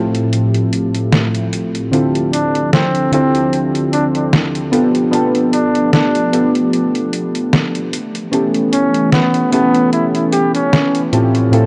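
Vaporwave at 75 BPM in D dorian, melancholic and woozy, with a lightly swung 16th-note feel and a dark cassette-tape haze over the whole short excerpt. Warbly lo-fi synth keys with a mellow, pulse-and-sawtooth tone and subtle chorus and tape echo carry the accompaniment up front, while a detuned, slow-blooming pad sustains chords underneath through chorus and phaser, and a gritty 8-bit drum machine ticks out hi-hat and a medium-tuned snare. A smooth-topped flugelhorn enters at 2.3 seconds with a solo melody, roughened by sampler grit and tape echo, as the harmony drifts from Fmaj9/A through Dm11, G9 and A7.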